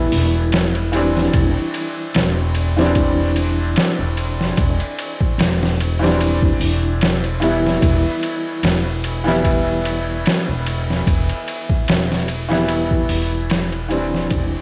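Trip hop at 74 BPM with a gently swung 16th feel, dark and smoky, built on a single Cadd9/E chord from a bright, brilliant upright piano with long sustain, harmonic tremolo and tape echo, a woody pizzicato upright bass on gut strings, and a gritty, compressed, pitched-down sampler-style drum kit with a thumpy kick, medium-tuned snare, hi-hat and ride sitting up front, all captured as a cassette home recording with light reverb and digital ambience before fading out from 12.1 seconds.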